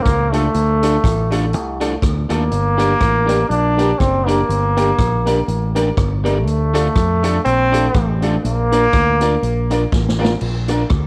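A light, small-room reverb frames this short ska excerpt, bouncy and joyful at 122 BPM in 4/4 with a gently swung eighth-note feel, tuned to A4 = 444 Hz. A brilliant, roomy trombone carries the melody up front with scooped notes and a tape echo, playing from the start until 9.9 seconds over chords that move from Dm to Gm and back to Dm. Beneath it, a fingered electric bass sits forward in the mix, dark and round with transformer saturation. A swinging big-band drum kit with a punchy kick, medium-tuned snare, hi-hat, rim click and crash has a natural, big-room character and plays a fill from 9.9 to 10.4 seconds. Further back, a slightly broken-up, twangy electric guitar supplies accompaniment, while a woody, worn, slightly detuned upright piano adds stabs, before the harmony lands on Bb at 10.4 seconds.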